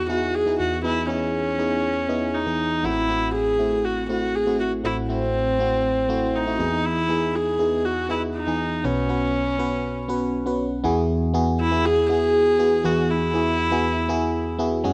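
A straight 4/4 pulse at 120 BPM carries this uplifting, nostalgic pop fragment in E major, tuned to A4 = 439 Hz, where a single intimate, up-front viola sings the melody with light vibrato, an airy sul tasto bow and a soft attack, touched by delay, over a glassy, bell-like FM electric piano with a fast, decaying attack, a noise layer, chorus and phaser, its chords moving from Emaj7 through Am6 and Bsus2 to a closing Eadd9 at 10.8 seconds, all set in a moderate plate reverb within a dark, warm production before the cut at 14.9 seconds.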